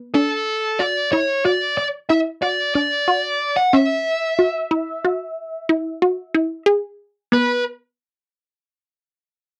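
Progressive instrumental in a tense, brooding 11/8, cut from a longer piece, where a juicy, squelchy, detuned sawtooth pluck with chorus and phaser spins arpeggios up front beside a dark, smooth, overdriven electric lead guitar melody over Dadd9 and C#m, both parts falling silent at 7.6 seconds in a dry, close 1970s-style studio sound with light reverb.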